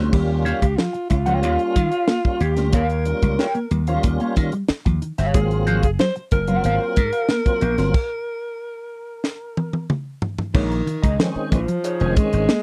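A breathy, subtoned alto saxophone with slapback echo leads this funky, hypnotic funk excerpt over punchy slap bass and a tight drum kit with a high-tuned snare, with dark fingered electric guitars, a tonewheel organ's stabs through slow rotary speaker, very quiet congas from 5.7 to 7.8 seconds, a stop at 7.9 seconds with a drum fill, and a dry, close 1970s-style studio sound.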